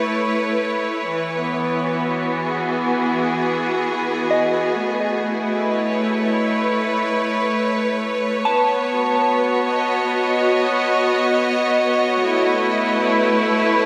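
A bright, biting symphonic string section holds sustained bowed chords with light vibrato from the start, up front yet distant in a cathedral-like reverb, moving between Aadd9, Eadd9 and B in A Lydian at 65 BPM. At 4.3 seconds a soft FM synth bell fades in with pure, mellow arpeggios high above, coloured by chorus, phaser and tape echo and sitting in the background until 12.2 seconds. The mood of this ambient excerpt is peaceful and luminous.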